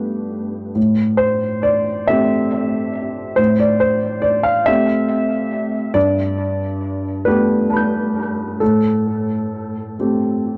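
A warm baby grand piano, up front and touched with tape echo, plays alone from the first moment in this wistful, reflective neoclassical minimalist piece in A minor, tuned to A4 = 435 Hz. At a slow 46 BPM in 6/8 with uneven, rubato beats, it drifts between Gadd9 and Am7 across a range from G2 to G6. The dry, close 1970s-style studio sound carries light reverb, and the 10.6-second clip is cut from a longer piece.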